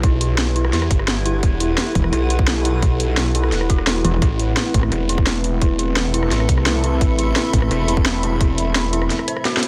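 Dark technical drum and bass with a futuristic edge, where a tight electronic kick and a cracking snare with hi-hat and rim click sit up front beside a snarling, growling saw bass, while a metallic wobble bass bursts in from 2.0 to 4.9 seconds and again briefly around 7.5 seconds, a moody, nasal analog pad holds sustained chords that move from Em to Am beneath a blurred, evolving granular cloud texture, an eerie, inharmonic bell arpeggio warbles through tape echo in the background, and a drum fill lands at 9.5 seconds in this cut from a longer piece.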